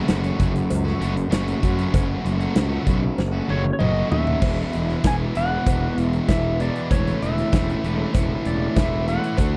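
A straight 4/4 classic rock groove struts along with a confident, swaggering feel in this short cut from a longer piece. A big rock drum kit sits up front with a punchy kick, a medium-tuned snare and bright cymbals, joined by a metallic cowbell tucked in the background, and a drum fill from 3.2 s carries the music into a new section at 4.4 s. Two guitars play the riff, one bright and distorted in the background and the other sludgy and overdriven, while a growly, fuzzed fingered bass stands forward beneath them. Very quietly underneath, a vintage string machine voicing cellos holds dark, full-bodied sustained chords with a soft attack and ensemble chorus. From 3.5 s a clean lap steel enters with a slide melody in volume swells, touched with slapback echo. The harmony moves from F#m to E and then A/E, and the sound is dry and close in a 1970s studio style.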